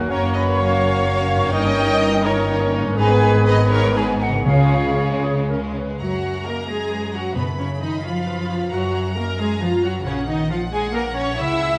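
A lush, vibrato-rich violin section carries the melody through this cheerful, lively fragment of a romantic orchestral movement in F# major, moving in a flexible 6/8 at 77-90 BPM with rubato, while a second, more distant violin section, smooth violas, rich cellos and dark, woody double basses fill out the string body. In the background, a mellow clarinet, warm oboe, bassoon and a mellow French horn section add supporting lines and held chords, an airy flute group floats above, and a very quiet, ringing harp plays arpeggios throughout. The winds and horns drop out around 6.0 seconds, leaving the strings and harp, and close-miked timpani strike at 4.5 and 7.4 seconds, all within a moderate stage reverb.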